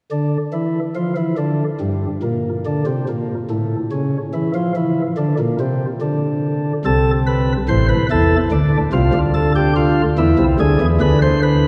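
Classical baroque-style three-part fugue for pipe organ, this short excerpt in D minor moves at 72 BPM in a straight 4/4 with a driving, serious character. A single chamber organ carries all three voices from 0.1 to 11.7 seconds, its flute stops light, bright and sparkling, with a crisp chiff. The parts span from A1 up to C5, and the flutes, in a chamber voicing, sit up front in the texture. The opening stays free of chords, then the harmony settles onto Am/C at 6.8 seconds, Dm, and finally E7. A cathedral reverb with a 4.5-second decay wraps the organ, and the listener seems placed further back in the room.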